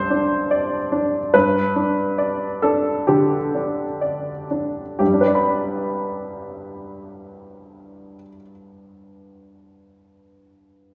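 An upright piano opens this brief classical excerpt in G major, its woody, slightly detuned tone sitting up front with a short sustain as it moves from a Csus2 to an open G5 chord. The intimate, hopeful music drifts with rubato around 60-74 BPM, slowing down through the first 5.0 seconds before settling onto a G chord. A wet recital hall reverb surrounds the piano, lending the close, clear sound a sense of space.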